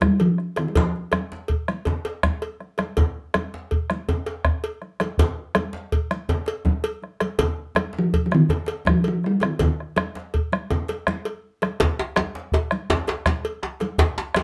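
Festive and powerful, this excerpt of a West African drum ensemble rolls along at 109 BPM in a straight 12/8, with a resonant, up-front talking drum carrying a low melody in Eb major pentatonic: it sounds briefly at the start and returns at 8.0 seconds. Underneath, a round, close bombo anchors the groove, joined by a deep djembe in a live room, bright, damped congas with a thin-skinned, vintage, band-limited character played with hard hands, and a metallic, dry cowbell. At 11.8 seconds a second djembe enters up front with a tight, cracking sound from a small room, all captured through close, detailed microphones with light reverb.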